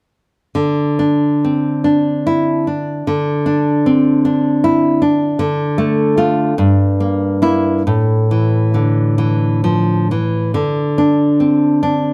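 This short passage unfolds in 6/8 at a slow 43-53 BPM counted in dotted quarters, with a free rubato feel that lets each phrase breathe. A single nylon-string guitar plays alone from 0.5 to 12.1 seconds, fingerpicked with a warm, full-bodied tone and finger squeaks that bring the listener close to the instrument. The mood is wistful and intimate, in the manner of a romantic piece for solo classical guitar, drifting from Cadd9/D through Dm and Edim/G to an open A5 before settling on Csus2/D. The guitar sits up front, captured by close, detailed microphones, while a moderate recital hall reverb of 1.3 seconds adds a gentle sense of space around it. Lifted from a longer work, the fragment feels like a wistful, searching moment within it.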